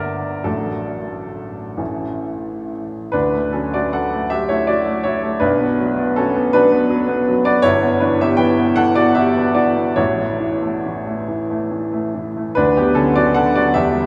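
This romantic classical character piece for solo piano moves in a slow, rubato 6/8, around 43-55 BPM in dotted quarters, with a hopeful, warm mood in D major. A baby grand carries it alone, its clear, natural tone sitting up front with long sustain, spanning G1 to G5 as the harmony passes from D through Bm and Em7/G to A before settling on Bm/D near 12.6 seconds. A cavernous cathedral reverb with a 5.5-second decay surrounds the instrument, and the passage, cut from a longer piece, restates its opening phrase at 3.1 seconds.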